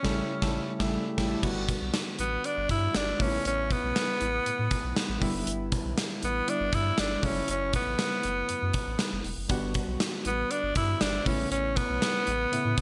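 A full-band accent opens this nostalgic, dramatic 1980s-style pop excerpt, then a raspy, forceful tenor saxophone with light vibrato carries the melody up front over round analog keys with chorus, a deep sine sub bass and a gated drum kit with a punchy kick and bright cymbals, set in a lush hall reverb as the chords move through Gmaj7, Aadd9, Em7 and F#m7.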